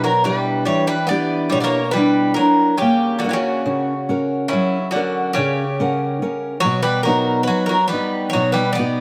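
Melancholic and wistful, this short fragment of Greek folk music for a bouzouki band moves in 9/8 metre with a straight feel. One bouzouki carries the melody in its middle register, its picked double strings sounding warm and metallic, with some courses doubled at the octave. A second bouzouki plays a lower supporting line with the same metallic, paired-string character. A fingerpicked steel-string acoustic guitar provides the accompaniment across a broad range, its auditorium body lending a warm depth. All three instruments play together from 0.0 to 9.0 seconds over a harmony that moves from Em7 to F# at 2.8 seconds and to B at 6.6 seconds, while a moderate plate reverb places the ensemble somewhat back in the room.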